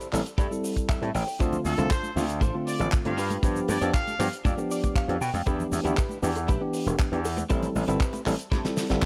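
Nu-disco with a cosmic, groovy mood, driven by an up-front, overdriven slap bass with sidechain pumping and a tight, dry kick, alongside a fat-snared damped 70s kit with hi-hat, shaker and handclaps, a tine electric piano heard through built-in speakers with dub echo, and a compressed clean electric guitar riff with chorus and echo, while congas and bongos enter in the background at 1.5 seconds, a nasal, straight-muted trumpet section carries the melody from 1.7 to 4.3 seconds, and a drum fill arrives at 8.5 seconds.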